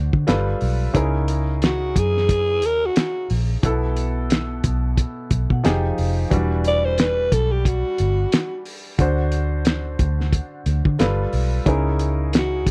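A dry, close studio sound in the 1970s manner frames this bittersweet, silky fragment of lush soul with a gentle swing. A muffled, cloth-damped drum kit with a fat snare and a round, foam-muted fingered electric bass sit up front beneath an intimate grand piano whose action noise can be heard, while a raspy, growling alto saxophone carries the breathy subtone melody with vibrato from 1.7 s. A mellow soft-mallet vibraphone rings briefly in the background at 5.5 s, over harmony that moves through chords such as G9, Fm9 and D7.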